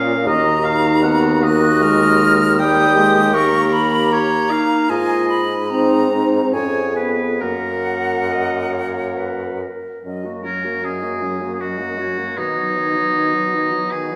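This excerpt opens at 0.0 seconds with oboe, French horn, clarinet and bassoon sounding together, and a bright silver concert flute takes up the melody at 0.3 seconds. It is a slow, lyrical classical movement for wind quintet in 3/4, with a romantic character, moving at 67-80 BPM with a rubato feel in F# major and tuned to A4 = 439 Hz. The airy flute sings an expressive, softly attacked line with vibrato and lifted highs. The oboe carries a clear second voice that sits up front yet has a roomy, distant tinge. Beneath them the French horn and a vintage-toned clarinet, the latter placed in the background, fill out the accompaniment, and a mellow bassoon with vibrato and a smooth top supplies the bass. The harmony moves from D#m through G#m and C#7/E# to F#, a new section begins at 10.0 seconds and later reaches B, and a wet recital hall reverb places the ensemble further back in the room.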